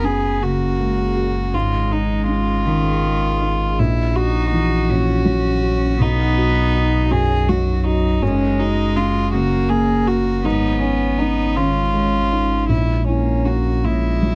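A dry, close recording with a 1970s studio feel frames this tender, intimate neoclassical passage in F# major, moving in a rubato 6/8 at 54 BPM and cut from a longer piece. A felt-muted upright piano with audible action noise carries the accompaniment while a warm, up-front solo violin sings the melody sul tasto, joined by a rich, distant cello on a second line touched by slapback echo. A punchy sine sub bass anchors the low end, and from 0.4 seconds a glassy, ethereal FM pad sustains chords very quietly beneath the chord cycle of F#add9, C#sus2/G#, F#7/A# and B.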